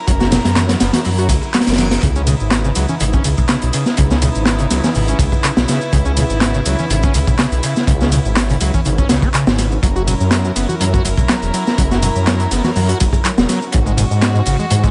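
Breakbeat with a swaggering, energetic drive, this excerpt moves at 123 BPM in 4/4 with a light 16th-note swing, set in C# dorian. A crunchy breakbeat kit sits up front, its punchy kick, high-tuned snare and hi-hat sounding saturated and gritty with a rolled-off top, while a dry analog drum machine adds handclaps, ride cymbal and shaker, and very quiet, bright congas and bongos fill in close behind. Underneath, a thick, detuned saw bass beats and menaces in the low register, and a squelchy, resonant acid bass riff sits further back, distorted and treated with subtle chorus and delay. A dark string section bowed sul tasto holds sustained chords with light vibrato and a soft attack, pumping against the sidechain. The harmony moves from F#7 to C#m9 at 2.0 seconds, returns to F#7, and closes on G#7sus4 at 13.7 seconds, with a reverse cymbal whooshing in the background just before the change. 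The mix is dry, with little reverb and a dull, capped high end.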